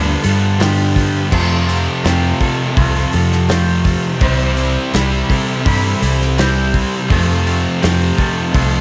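A short excerpt of hazy, wistful shoegaze-tinged dream pop opens on a stacked wall of guitars: a thick, dark fuzz riff with subtle chorus, a crunchy overdriven riff trailed by reverse reverb, and a bright, double-tracked overdriven part sitting further back, all over a round, punchy, foam-muted fingered bass. Behind them, a slightly broken-up guitar through a small old amp picks high arpeggios with a touch of chorus and slapback echo, while a loose indie drum kit enters at 0.2 s, up front with a tight kick, medium-tuned snare, hi-hat and dark crash cymbals. The straight 4/4 groove drifts through G7, Fadd9 and C in a small room with light reverb.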